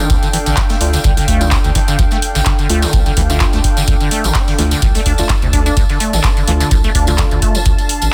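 A dense, heavily limited mix with little reverb carries this short, trippy and hypnotic acid house cut at 127 BPM in D minor, its swung 16ths riding a single Dm chord. An up-front, deep electronic kick and a round, dark analog bass anchor the groove, while a squelchy, resonant sawtooth acid riff with filter sweeps, lush chorus, delay and sidechain pumping sits alongside a smooth, detuned analog pad with a moving notch that pumps too. An electro drum machine adds dry handclaps and metallic hats, a gritty sampler-style soul kit plays hi-hat, snare and tambourine very quietly, and a jingly acoustic tambourine, a soft vintage chord stab with delay, and a nostalgic lo-fi tape-like pad with phaser and reverb hover in the background.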